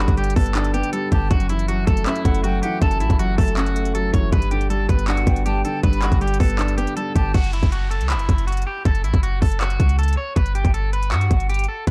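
A menacing, brooding half-time trap excerpt opens with an edge-of-break-up electric guitar carrying a twangy, picked melody over felt-muted upright piano, a breathy flute line with delay in the background, and a boomy sine 808 bass, with the trap kit's hard-clipped kick, crisp hats and handclaps sitting up front from 0.1 seconds. At 7.3 seconds the flute and piano drop away and a background downlifter enters, leaving guitar, bass and drums to carry on. The production is dark and dry, with a faint mains hum beneath.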